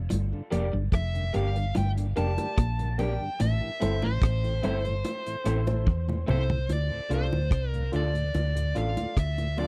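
A straight 4/4 roots reggae groove at 73 BPM in D minor sets a serious, meditative tone. The deep, dry drum kit sits up front with a tight kick, rim click, hi-hat and toms, and brings in a fill from 5.9 to 6.7 seconds. Low-tuned bongos add round, roomy percussion beside a hollow-body bass that is fingered, amped and tube-saturated. A picked, compressed guitar at the edge of break-up plays a riff in the background until 6.5 seconds, while a second guitar through a small old amp adds lo-fi accompaniment bathed in lush chorus and dub echo. A very quiet tonewheel organ with key click and slow rotary speaker, together with mellow grand piano stabs, fills out the chords moving from Gm to Am and landing on Dm at 6.7 seconds. A smooth, overdriven lead guitar carries the melody high above, its dark tone trailing dub echo, all captured in a dry, close 1970s-style studio sound cut from a longer piece.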